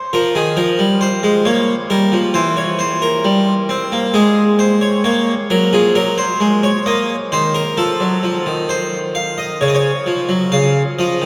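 Classical, baroque-style two-part invention for solo harpsichord in Bb minor, moving at a driving 66 BPM in 3/4 with a serious mood. The plucked, airy French-style harpsichord sits up front with a full sound from two sets of strings, spanning Db3 to F5 as its harmonies pass from Fm through Bbm, C7/E and Abadd11 before settling on Db near 10.5 seconds. A vast cathedral reverb with a 6.6-second decay surrounds the instrument in an echoing space, and the recording is a short cut from a longer piece.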